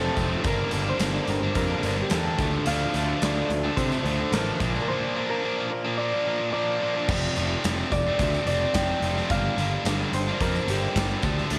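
A brooding, gritty classic rock excerpt in G minor at 109 BPM opens with a ringing, thumb-plucked Celtic harp melody over an up-front distorted electric guitar riff, a crunchy overdriven guitar in the background and a dark, round fuzz bass, while a very quiet, jingly tambourine sits close by and a big rock drum kit with a punchy kick and medium-tuned snare joins at 0.2 seconds. The background guitar drops out at 7.1 seconds as the chords move from G minor, D minor and B-flat to F, leaving the harp to take a solo over the band until the cut at 11.6 seconds. A small room ambience frames the bright, overdriven guitars and the stony drum sound.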